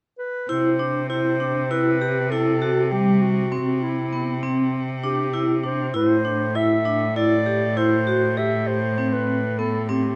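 A light reverb places this short contemporary chamber piece in a modest space, with the clarinet and cello set up front. Cut from a longer work, it moves in an uneven 9/8 at 198 BPM counted in eighths with a straight feel, and the mood is urgent yet hypnotic. A mellow clarinet opens the melody at 0.2 seconds, singing in a present, classical solo style between E4 and E5. At 0.5 seconds a vibraphone joins with arpeggios struck by medium hard mallets, its metallic, ringing tone shimmering with a medium motor vibrato, while a single bowed cello carries the bass with a biting, intense vibrato. The harmony rests on C before shifting to Am7 at 6.0 seconds, and all three parts carry on together to the cut at 10.2 seconds.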